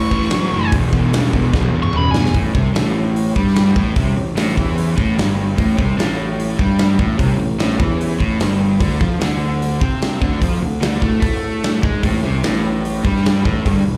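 Raunchy and swaggering, this blues rock and southern rock cut moves at 148 BPM in a straight 4/4, captured as a live club gig heard through the venue's PA with moderate reverb. A bluesy, distorted lead guitar opens with a brief solo high in its range, coloured by slapback and tape echo, and it drops out at 2.4 seconds as a drum fill leads into the main section. Underneath, a raw, double-tracked garage guitar drives an overdriven riff up front with its own slapback echo, while a fuzzy, picked electric bass growls along beneath it. The big acoustic drum kit sits forward in the mix, with a punchy kick, a medium-tuned snare, hi-hat and toms ringing in a natural, roomy space. A clear tonewheel organ holds very quiet sustained chords throughout, its slow rotary speaker, chorus vibrato and key click adding a faint shimmer. The harmony rides on gritty sharp-nine dominant chords, moving from A7#9 to D7#9 at 8.8 seconds and back to A7#9 at 12.0 seconds before the fragment cuts off.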